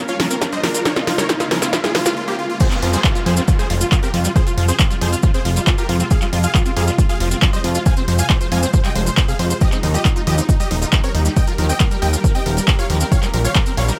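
Uplifting trance with a soaring, emotional mood, this excerpt opens on a short build-up where a drum fill from the punchy analog drum machine and a very quiet riser and downlifter sweep over Bbm7. A brief break follows, and at 2.6 seconds the drop arrives, with the fat, detuned sawtooth analog bass entering just after at 2.8 seconds, up front beside the tape-warm electronic kick. Over them, a detuned supersaw stab carries the melody with sidechain pumping and tape echo, squelchy resonant acid bass arpeggios with chorus sit in the background, a shimmering, granular pad holds sustained chords through phaser and reverb, and a grainy, saturated cabasa adds texture as the harmony moves from Fm to Eb and back to Bbm7.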